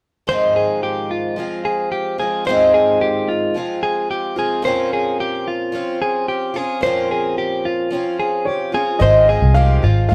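A shimmering, octave-doubled twelve-string acoustic guitar picks boxy chords through this breezy, bright indie pop piece at 110 BPM in Ab major, moving from Ab6 to Bbmadd9 and back, joined by clean, compressed electric guitar arpeggios recorded direct, a woody, slightly detuned upright piano melody with short sustain from 8.5 seconds, and a dark, round, punchy foam-muted electric bass that arrives up front at 9.0 seconds, the band heard playing live together in a moderate stone room.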